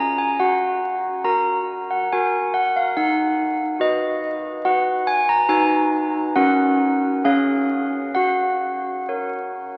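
A solo set of handbells carries this short classical tune, struck with hard clappers and sounding brilliant, clear and ringing as it sits up front in a close, full, dry pickup. The piece moves at 69 BPM in 3/4 with uneven beats, in F# major tuned to A4 = 439 Hz, and the bells range from C#4 to A#5. The harmony travels from F# through B/D# and F#/C# to C# before settling back on F# at 8.2 seconds, giving the phrase a festive yet serene character. Around the bells hangs a long, wet cathedral reverb, and the whole recording carries the crackle of a very old 78 rpm record. This roughly 9.8-second passage is cut from a longer piece.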